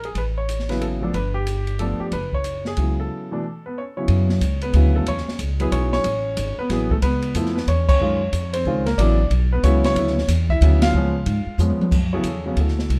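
A swinging 3/4 pulse at 184 BPM drives this cool, smoky jazz piano trio excerpt in F# minor, with a woody, up-front pizzicato upright bass and a dark drum kit with a boomy kick and a rolled-off top playing throughout. The grand piano carries the melody with a natural, up-front tone over chords such as A69, F#m11 and C#7#9, punctuated by a break and by band accents at 7.8 and 10.8 seconds. A drum fill leads into a brief piano solo at 11.9 seconds, and light reverb softens the room.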